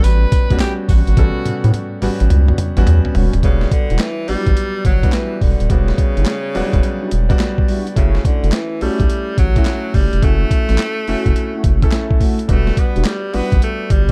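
Punchy and confident, this dry, dark new jack swing R&B excerpt moves at 106 BPM with swung sixteenths in E dorian, pairing a bright, distant tenor saxophone lead with clear, polished baby grand piano chords, a round, deep analog bass and a gritty, pitched-down sampler-style drum kit of thumpy kick, high-tuned snare, hi-hat, toms, handclaps and tambourine up front, while chorus-laden, detuned synth brass stabs sit in the background from 0.5 s and a drum fill runs from 1.2 to 3.4 s.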